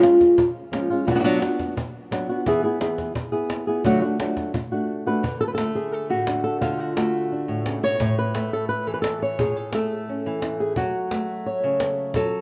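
A rough home-demo mix bathed in lush hall reverb carries this dramatic, intense flamenco excerpt, where a dark, thumb-plucked acoustic guitar sits up front with a slapback echo and leads the melody over chords moving from C# through Bm, E and D to A and F#m, while a snappy, vintage-sounding cajon with snares, played with soft hands and band-limited in tone, sits lower in the mix beneath it.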